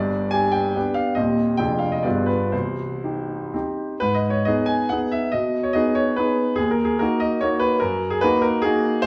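A clear, open grand piano plays alone from the start, a capricious and wistful romantic dance in 3/4 with dotted rhythms and free rubato that moves between 115 and 158 BPM, spanning the keyboard from its deep bass to the upper treble. The phrase opens in C minor over chords such as G7b9 and Cm, then at 4.0 s shifts into G# minor, moving through G#m, D#m and D#m/F# until the fragment cuts off at 9.1 s. The piano's long sustain sits up front, set in the wet reverb of a large studio and heard from further back in the room.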